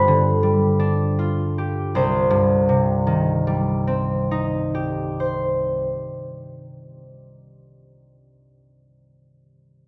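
Classical solo harp in C minor, a gentle, wistful fragment cut from a longer piece, drifts in rubato 6/8 at about 27 beats per minute as the fingerpicked concert harp rings out ringing and up front between C2 and D5, slowing over the first 2.0 seconds across a G7 chord before settling onto C minor, all bathed in a wet recital-hall reverb heard from further back in the room, with the instrument tuned to A4 = 439 Hz.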